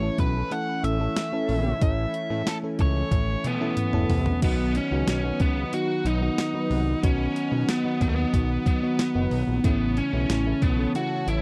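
A straight 4/4 groove from a clean, thumpy 12-bit drum machine, entering at 0.2 s and breaking into a fill from 3.1 to 4.4 s, drives this dramatic, urgent fragment of 1980s-style pop, where a fat, detuned analog bass sits up front beside a biting, overdriven lead guitar melody with tape echo, while a glassy, bell-like FM electric piano with chorus, dark, round synth brass stabs and a swirling phased analog pad in the background fill out a dry, close studio sound with light reverb.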